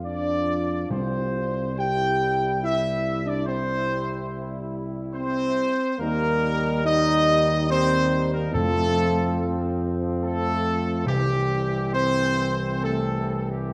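A moderate scoring-stage reverb gives this brass-and-timpani passage a sense of space, taken from a longer classical piece in triple metre with slightly uneven beats and a majestic, solemn mood. Up front, the trumpet section carries the melody with a mellow, smooth top, light vibrato and gentle attacks, while a solo tuba, also placed forward and softly attacked, anchors the low end. Behind them, a dark, tight French horn section and a distant, roomy trombone section with light vibrato hold sustained chords. Timpani played with medium mallets on plastic heads sound close and dry in the background, entering at 0.9 seconds and returning at 8.5 seconds. The harmony moves from C to E-flat and F before settling back on C.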